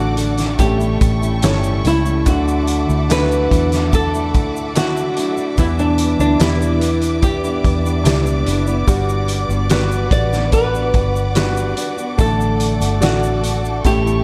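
Emotional and hopeful, this pop ballad excerpt moves at an unhurried 72 BPM in a straight 4/4, set in D major and cut from a longer piece. A fingerpicked flamenco guitar carries the melody between D4 and D5, its tone carrying audible finger squeak, while a concert grand piano with deep bass and a smooth, vintage character supplies the accompaniment. Behind them, a lush bowed string section holds sustained chords with vibrato and an even, silky top, and a full-bodied jumbo steel-string acoustic guitar, plugged in and fingerpicked, plays arpeggios in the background. A round, foam-muted vintage electric bass sits up front with a punchy, amped tone, joined from 0.2 seconds by a loose indie drum kit with a fat snare, punchy kick, hi-hat and a pumping room sound, plus a grainy, bright tube shaker tucked far back. The harmony drifts from D through A7, Dadd9, Em7 and Gmaj7 before settling on D again at 12.2 seconds, all within a dark production with light reverb and small room ambience.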